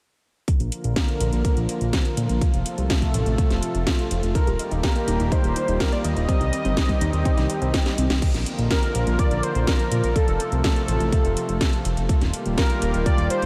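Italo disco excerpt at 124 BPM in Bb major, playful and danceable, with a punchy, tape-warm electronic kick and a house kit of cracking snare, metallic hats and crash alongside a fat, detuned sawtooth bass, while a smooth, vintage pad holds sustained chords through Bb, F, Ebadd9 and Cm. At 4.4 s a bold, wave-folded unison lead with vibrato enters, carrying lush chorus and analog delay, joined until 8.2 s by a very quiet, lo-fi pluck playing warbling, ring-modulated arpeggios. A drum fill at 7.9 s leads into the second section, and a huge ambient reverb soaks the mix in a dreamy haze.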